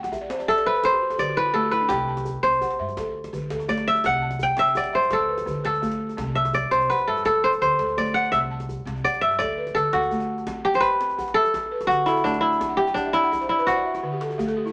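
Hypnotic and joyful, this West African traditional piece for strings and xylophone moves at 112 BPM in a straight 12/8 in C lydian, rocking between C and D chords. The bright, ringing kora sits up front with a fingerpicked solo until 10.5 seconds, while the buzzing, woody balafon, struck with soft rubber mallets, weaves arpeggios and adds fills at the start and close. A cracking djembe with metal rattles, played with hard hands, plays a short fill just before the dark, thumpy pizzicato upright bass enters at 1.9 seconds, all in a moderate studio reverb.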